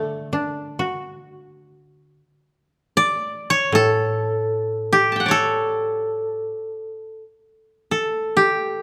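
Two fingerpicked kotos open together in this calm, austere excerpt of Japanese traditional chamber music, unfolding in free time in D ryukyu with a tuning of A4 = 439 Hz. The upper koto carries the melody between G4 and A5 with a warm, woody, up-front tone, while a softer, mellow second koto accompanies from A2 to F#4 before stopping at 6.5 seconds, after which the melody sounds alone until 8.8 seconds. Close, detailed microphones catch the dry attack of both instruments against a moderate recital hall reverb.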